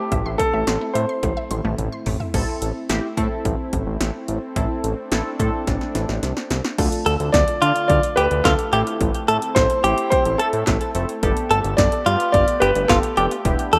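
Synth-pop with a driving, nocturnal mood, cut from a longer piece and heard in a rough home-demo mix with light digital ambience. A punchy analog drum machine, with crash cymbal, handclaps, hi-hat, kick, snare and toms, and a fat, detuned sawtooth bass run throughout beneath a lush unison pad with chorus in the background. A squelchy, resonant blip pluck plays bright arpeggios through phaser and delay until 2.3 seconds, when a funky, mellow polysynth comp enters, and an intimate grand piano with audible action noise carries the melody through digital delay, returning at 7.3 seconds just after a clean, direct-recorded electric guitar comes in up front with a second line through chorus and delay over Dm, Am and Gadd9 chords.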